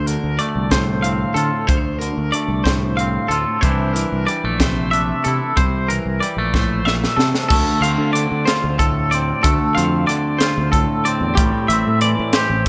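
Math rock and midwest emo in a wistful, restless mood at 62 BPM in 6/8 and D minor, where two twangy electric guitars share the foreground, one fingered with spring reverb playing Dm7 and C13 chords as accompaniment while the brighter, picked, compressed one spins high arpeggios through tremolo and slapback echo, over a growling, overdriven fingered bass and a crisp, gritty fusion drum kit with a high-tuned snare and punchy kick whose fill from 6.5 to 7.5 seconds ushers in a new section moving from Dm7 to Am7, all set in a moderate recital hall reverb.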